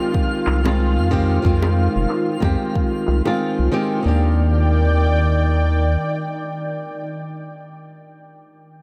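A dreamy, reverb-soaked mix in a cathedral-like space opens this short sunny, blissful sunset chillout excerpt in Eb major, moving at 92 BPM in 4/4 with a 16th-note swing. Up front, a fingerpicked acoustic flamenco guitar plays accompaniment through an analog delay, while a lush, thick unison pad of detuned sawtooth voices holds chorused chords with a slow attack and long release. A deep, tape-toned electronic kick with studio reverb drives the groove until 2.9 seconds, alongside very quiet layered electronic shaker and handclaps and barely audible tight, high-tuned bongos. A round analog bass, dark and evolving with a fast attack and wave-folded square and sine tones, sits prominently in the low end from 0.5 to 6.0 seconds. In the background, a twinkling granular FM texture with an octave-up shimmer sparkles on F6 through its own reverb and lush chorus until 4.1 seconds, when the harmony shifts from Fm7 to Ebmaj7.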